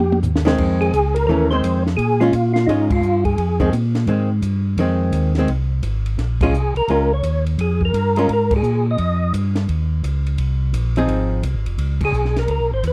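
This close, dry recording has the small-room feel of a 1970s studio, capturing a smoky, bluesy soul jazz organ trio in a passage cut from a longer piece. At a swinging 171 BPM in 4/4 and F minor, the group moves between Fm7 and Bbm7 before closing on Db7, opening with a short drum fill and hitting band accents together at points such as 2.9 seconds. One tonewheel organ carries the melody in short phrases between Eb4 and Eb5, its clean, percussive third-harmonic attack colored by chorus vibrato and a slow rotary speaker. A second, mellow organ holds down the bass from F1 to Bb2 with a round, lightly overdriven tone, also turning through a slow rotary speaker and chorus. A hollow-body archtop guitar, picked and compressed, plays accompaniment between Eb3 and Ab4 for much of the passage. A compact cocktail kit with a high-tuned snare and punchy kick sits further back in the mix, its top rolled off.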